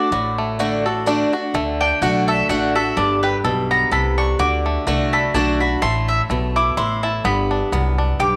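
Lightly reverberant studio sound frames this haunting, lonesome bluegrass piece in three with a swung feel, cut from a longer piece, where a bright, woody, double-strung mandolin takes the solo over a mellow, twangy fingerpicked banjo, a boxy swing-style acoustic guitar sitting up front with audible finger squeak, and a dark, thumpy gut-string upright bass played pizzicato that joins at 0.1 seconds.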